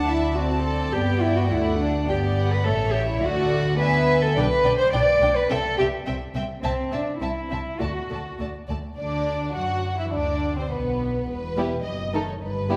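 A quick, spirited classical-period movement for string orchestra, cut from a longer piece, moving with a lively, rubato 2/4 lilt. A dusky first violin section carries the melody with light vibrato and a smooth top, while a second violin line and a pure, floating viola accompaniment sit close beneath, all bowed sul tasto; up-front cello and double bass sections anchor the bass with soft attacks. A wet concert-hall reverb surrounds the ensemble, and at 9.0 s the music moves into a new section.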